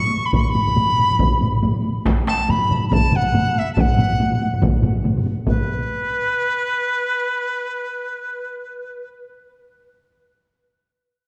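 A bright, reedy dizi with a buzzing membrane, vibrato and tape echo opens up front over a hard-stick solo taiko, soon joined by a compressed and saturated second solo taiko and, in the background, two heavy-stick taiko ensembles (one distant), driving this powerful Japanese traditional taiko piece in B suspended pentatonic at 141 BPM in swung 4/4 as it speeds up, until the drums fall away by 5.9 s and the dizi carries on alone to 9.1 s in a dark, reverberant recital-hall sound, cut from a longer piece.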